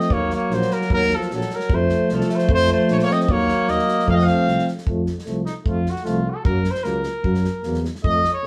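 A swung 2/4 pulse drives this fiery, bittersweet Balkan brass band fragment, cut from a longer piece, with a tight kick and a medium-tuned snare on an acoustic soul drum kit that sounds boxed into a pumping room, its top rolled off. A mellow tuba with light vibrato carries the bass line, while a close-miked euphonium and a smooth-topped trombone, the latter set in the background, fill out the accompaniment in a classical style. Up front, a soft-attacked, distant and roomy trumpet sings the melody, joined by a clear alto saxophone with vibrato playing a second line until it stops at 4.7 seconds. From 4.9 seconds the trumpet takes a solo over the rest of the band as the harmony moves from Ebm and F to Gb. The band plays live together in one room, bathed in a wet studio reverb that gives the brass a warm, ensemble glow.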